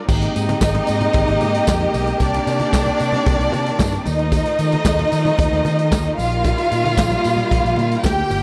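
Danceable and celebratory, this disco excerpt moves at 113 BPM in a straight 4/4, built on lush chords of Abmaj9, Cm9, Ebsus2 and Bb5. A clear, focused string section holds sustained chords with vibrato from the very start, while a rich, expressive violin section sits up front carrying a second line above it. Underneath, a growly, amped fingered electric bass drives the low end alongside a vintage acoustic drum kit with a punchy kick, medium-tuned snare, hi-hat, handclaps and crash cymbal, its top end rolled off for a natural studio-room sound. Very quiet, damped congas with a bright, thin skin add texture, and a jingly tambourine stays in the background. Light reverb rounds out the ensemble across this 8.4-second fragment cut from a longer piece.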